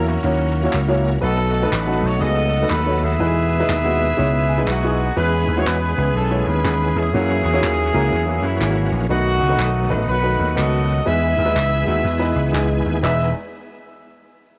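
A tight, punchy horn section carries the melody up front with a light vibrato and a vintage pop flavour, giving this uptempo gospel excerpt its reverent, uplifting voice over a swung 4/4 groove. Underneath, an amped electric slap bass sits close and punchy, while a woody, intimate upright piano, slightly detuned with its action noise audible, plays the accompaniment and steps forward with a fill at 4.2 seconds. A bright, shouting tonewheel organ holds sustained chords in the background, lightly overdriven and coloured by chorus vibrato and a slow rotary speaker, then takes its own fill at 11.6 seconds. Tambourine, tube shaker and group handclaps recorded in a small room come in at 0.1 seconds. The harmony cycles through F#7, B7 and Emaj7, and the whole excerpt has the lo-fi character of a home cassette recording with light studio reverb.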